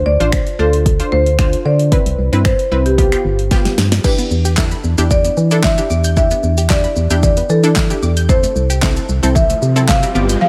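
Dance-pop with an energetic, confident drive, this short cut from a longer piece sets a mid-forward marimba melody with digital delay over a hollow, organ-like FM bass that pumps against an up-front deep house kit of deep kick, fat snare, handclaps, finger snaps, hi-hat and shaker, while a round, detuned analog pluck with chorus fills in the chords, a lush unison pluck arpeggio joins in the background at 4.0 seconds after a drum fill, and a riser rises faintly from 9.2 seconds, all in a dry, close sound.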